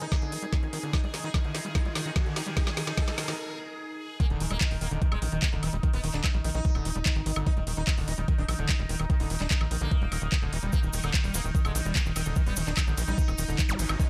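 A straight 4/4 pulse at 147 BPM drives this hypnotic, alien psychedelic trance excerpt in Eb major, where an overdriven, knocking electronic kick sits up front beside a garage kit of woody snare, metallic hats, handclaps, ride and woodblock, a tight, punchy sequencer bass, a squelchy distorted acid riff in the background with a filter sweep and dub echo, a buzzing plectrum-plucked sitar melody with phaser, a bubbling stepped-filter texture holding bright chorused chords, an ethereal airy pad and background riser and zap effects during a build-up and drum fill until a brief break at 3.4 seconds gives way to the drop at 4.2 seconds, with a grainy cabasa joining at 10.7 seconds in a dry mix.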